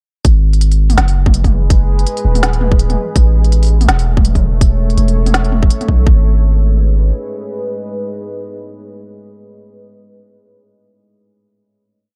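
Half-time drum and bass with a cinematic, tense mood, built on an overdriven, tight kick up front, a sparse kit with woody snare and smooth hats, and a deep sine 808 bass in chopped phrases, while a moody detuned sawtooth pad with chorus and its own reverb pumps beneath the drop before holding a final G#m chord from 6.1 seconds to the end.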